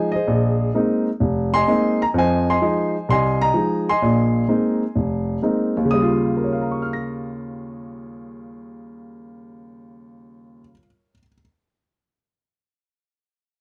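Solo jazz at 128 BPM in 4/4 with a swung eighth-note feel, this playful, relaxed fragment of a longer piece in Eb mixolydian features a warm, up-front grand piano spanning F1 to Bb6, moving between Bb9sus4 and Fm7 before arriving at Eb9 at 5.9 seconds, all captured in a dry, close 1970s-style studio sound with light reverb.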